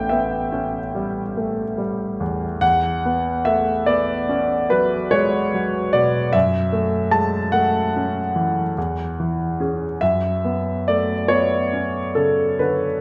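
In a 9/8 played with free rubato, this hazy, nocturnal stretch of impressionist solo piano drifts through lush extended harmonies, opening on an A9 and settling on F#7sus4 at 10.0 seconds. The concert grand sits up front with a clear, natural tone and a deep bass, ranging from A1 to A5. A wet recital-hall reverb and a dark production shade the sound across this 13-second passage cut from a longer piece.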